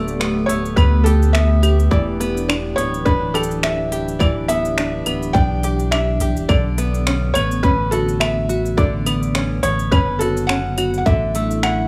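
A light small-room ambience surrounds this short folktronica cut, which feels pastoral and playful. At 105 BPM in 4/4 with a gentle swing on the sixteenths, a felt-muted upright piano carries the melody with a soft, muted tone, short sustain and audible action noise, its notes trailed by tape echo. An open-back banjo, fingerpicked and plunky with a twangy bite, plays arpeggios through the same tape echo, while a warbling, nostalgic pad of detuned sawtooth and triangle tones sits dark and in the background, holding sustained chords with chorus and its own reverb. Underneath, a round, mellow sine sub bass stays up front, and an organic electronic kit of claves, finger snaps, crisp hi-hat and shaker adds overdriven texture, joined at 0.8 seconds by a tight, overdriven electronic kick. The harmony moves from Gadd9 to Em7, then Bmadd9, landing on Dadd9/A just before the passage ends at 11.9 seconds.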